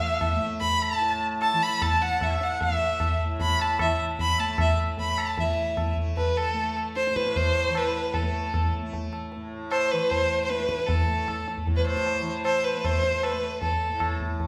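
A straight 7/4 pulse at 152 BPM drives this introspective, meditative Hindustani classical excerpt, with a low-tuned, close and dry tabla with a short ring entering at 0.2 seconds over a softly plucked, buzzing, shimmering tanpura drone. Up front, a single bowed violin carries the melody with a rich, smooth, even vibrato, while a clear, distant oboe plays a classical-style second line in the background until 5.5 seconds, just as the piece moves into a new section. The recital hall reverb lends the whole performance a wet, spacious sheen.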